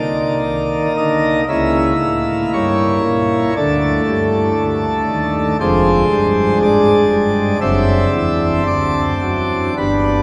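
Grave and dark, this brief cut from a longer classical chorale-style piece moves in 4/4 at a rubato 53-61 BPM, played by a solo pipe organ on a full plenum. The brilliant, baroque-voiced registration with mixtures and audible chiff sits up front, spanning F1 to E5 as the harmony travels from a rootless Cm7 through C#dim7 and Dm7b5/F to a D7/F# at 7.6 seconds. A wet cathedral reverb with a 7.3-second decay surrounds the sound.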